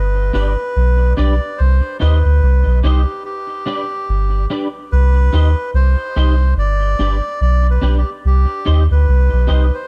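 A reedy, breathy melodica and a deep, round dub sub bass open this laid-back, serious roots reggae fragment together, cut from a longer piece. The melodica carries the melody with a nasal, boxy character and a dub echo trailing its phrases, while the soft sub bass sits up front, sustained beneath it. From 0.3 seconds an electric guitar at the edge of break-up adds accompaniment, picked and compressed, its slightly broken-up tone thickened by ensemble chorus and its own dub echo. The harmony moves back and forth between G and C minor over a relaxed, swung 16th-note groove. The production is dark and warm, with little reverb and a faint mains hum beneath the parts.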